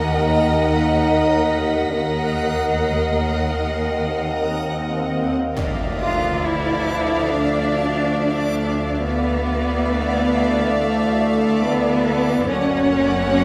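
Cinematic suspense film score at 69 BPM in 4/4, tense and uneasy, cut from a longer piece and set in a wet scoring stage reverb. Bowed string sections carry the weight: a cello section with expressive portamento leads the low end over a focused double bass section. Violins take the melody and a second line above a smooth-topped viola section, while a distant, high violin texture sits in the background until 5.1 seconds and returns at 12.5 seconds. A mellow, very quiet French horn section holds chords alongside a bright, reversed, granular swelling texture, with a resonant, ring-modulated drone of moving overtones beneath and a ringing fingerpicked concert harp barely audible. An electronic swell builds from 4.4 seconds into an impact at 5.6 seconds, where a roomy trombone section joins with sustained chords as the harmony shifts from D#m to Dmadd9, before settling on F# near the end.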